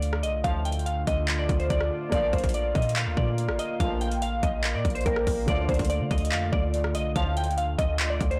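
Hip hop trap in a half-time feel, this melancholic, dark excerpt is carried by a glassy digital keys melody with chorus and delay, set over a mellow grand piano in the background and a deep, moody sawtooth pad with slow attack, chorus and built-in reverb. A boomy, clean 808-style bass underpins an overdriven trap kit with a hard-clipped kick, metallic hats, handclaps and rim clicks that sits up front, while a warm, distant brass ensemble with a soft attack plays tight stabs from 0.4 to 7.5 seconds. The whole recording is blown-out and overdriven, with little reverb, over a Dm, Bb, Dm progression.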